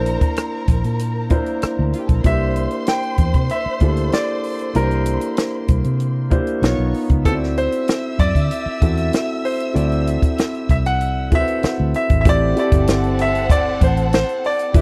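A straight 4/4 groove at 96 BPM comes from a compact cocktail drum kit entering at 0.1 s, with punchy kick, high-tuned snare, rim click and hi-hat sitting dry and up front beside a dark, round, foam-muted fingered electric bass. Over this smooth, bittersweet 1970s-style soul, a brilliant, short-sustained grand piano carries the melody while a second, deep-toned concert grand with long sustain supplies accompaniment, and a distant, lush violin section adds an expressive bowed second line with vibrato. Cut from a longer piece, the close studio sound moves through rich extended chords before settling onto Am7 at 12.2 s.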